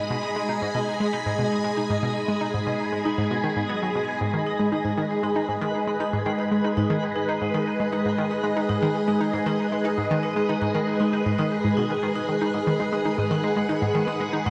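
A steady, straight 4/4 pulse carries this mysterious, hypnotic stretch of sequencer-driven space music, cut from a longer piece and resting on a single minor chord. A bright, up-front analog pluck drives the riff with a fast attack and short decay, its round sawtooth and square-wave tone roughened by a noise layer and ring modulation and moved by a filter sweep, chorus and tape echo. Above it, a swirling, vintage string machine holds sustained chords, its slow attack thickened by ensemble chorus and phaser. A metallic vibraphone, struck with medium hard mallets and its motor off, plays ringing arpeggios through tape echo, fading in across the full 14.5 seconds. A mellow, twinkling granular texture with an octave-up sparkle and long release floats high in the background, and shimmer reverb on every part sits inside a huge, wet ambient space with the soft grain of cassette tape.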